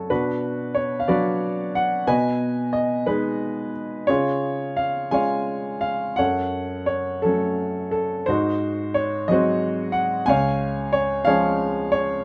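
Classical solo piano in a lyrical, tender vein, this short excerpt is cut from a longer piece and moves at a gentle 56-62 BPM in 6/8, counted in dotted quarters, with a flexible rubato feel. A single grand piano carries everything from 0.0 to 12.2 s, spanning C#2 to G#5, its tone warm and slightly boxy and placed up front in the sound. The harmony drifts through Bm, G#m/B and C# before reaching F#m, then leans on G#7 and comes to rest on C# at 10.3 s. A moderate studio reverb gives the instrument a modest sense of room around it. The tuning sits a touch low at A4 = 439 Hz, lending the whole passage an intimate, unhurried glow.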